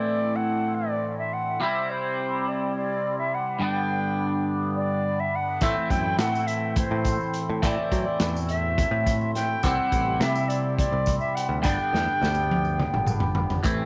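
A reedy silver concert flute carries the melody through tape echo over a twangy, double-tracked electric guitar riff with phaser and a mellow, very quiet pedal harmonium, before a crunchy breakbeat drum kit, growly picked electric bass and jingly background tambourine enter at 5.6 seconds in this trippy, mysterious psychedelic rock excerpt in 7/8 at 209 BPM in A dorian, with a drum fill from 11.9 seconds.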